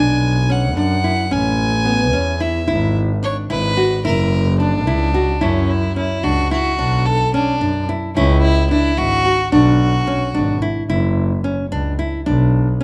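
A bright, earthy single violin carries the melody up front, its light vibrato and airy bow sound giving this hypnotic, pensive chamber piece its voice until it falls away at 10.6 seconds. This contemporary instrumental excerpt, cut from a longer work, moves in an uneven 5/8 metre at 219 BPM counted in eighths, with a straight feel in B dorian and tuning set to A4 = 443 Hz. Beneath the violin, a nylon-string guitar plays fingerpicked classical arpeggios in a warm, acoustic tone, with the occasional finger squeak audible. A single bowed double bass sits up front with a rich, focused sound, smooth on top and shaded with vibrato, and it is the loudest of the three parts. The harmony moves from Bmadd9 through A, E9/G# and F#7 before a second section begins at 5.4 seconds, circling F#5, Bm and C#m. Close, detailed microphones and a light reverb capture the trio with clarity and intimacy.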